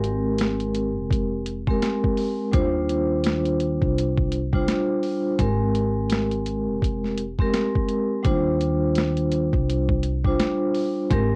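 A confident, soulful boom-bap hip-hop cut with a swung 16th-note feel, built on a gritty, pitched-down sampler-style drum kit with a thumpy kick, high-tuned snare and hi-hat sitting up front with cassette-tape grit, a woody pizzicato upright bass on steel strings, and a mellow, airy vibraphone played with soft mallets whose ringing tone and slow motor vibrato carry the Abmaj9 and Ebmaj13 changes through this short, dry home-cassette clip from a longer piece.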